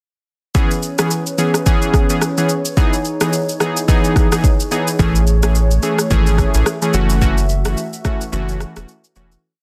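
The recording sounds dry, dense and heavily limited, with a modern master. This mellow, hypnotic afrobeats piece rides a swung groove from an electronic afro-pop kit, whose deep, soft kick sits under syncopated rim clicks and shaker. Vintage analog keys with a warbling, detuned, chorused tone play syncopated chords up front, while a hollow, flute-like pad holds sustained chords softly beneath them. At 5.0 seconds a round sine sub bass enters with a bouncy, syncopated line. The harmony moves through C#m7, Emaj7, Amaj7 and F#m7 before the whole piece fades out from 7.2 seconds and drops into a brief break near the end.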